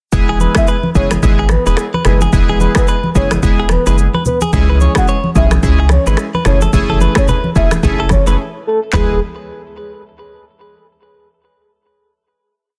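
An up-front, produced afro-pop drum kit with a deep kick, syncopated rim clicks layered with finger snaps, handclaps, shaker, toms and a softly clipped snare drives this sunny, romantic afrobeats piece at 109 BPM in E major, joined by a round, bouncy analog bass line, bright syncopated chords on chorused analog keys, soft-handed congas in the background, an interlocking twangy riff from a clean direct-recorded electric guitar with tape echo, and a dark, octave-layered synth lead hook with chorus, tremolo, vibrato and tape echo that enters at 0.6 seconds, the harmony moving through E, C#m and F#m7 before a brief break at 8.4 seconds and a closing E chord in a dry, dense, heavily limited mix.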